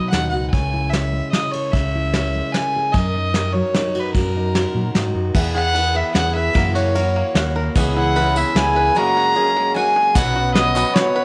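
A nasal, reedy fiddle carries the melody up front over a dark, fingerpicked steel-string acoustic guitar, round, punchy electric bass and smooth brush drums in this hopeful, anthemic indie folk excerpt in 3/4 at 150 BPM; a shimmering twelve-string acoustic guitar and twangy banjo arpeggios take over from the first guitar at 5.3 seconds, an open-sounding grand piano, a clear trombone second line and distant, jingly tambourine join near 7.8 seconds, and very quiet, hollow handclaps arrive at 10.2 seconds, all in light studio reverb as the chords move from B through C#m and F#7 to Bsus2.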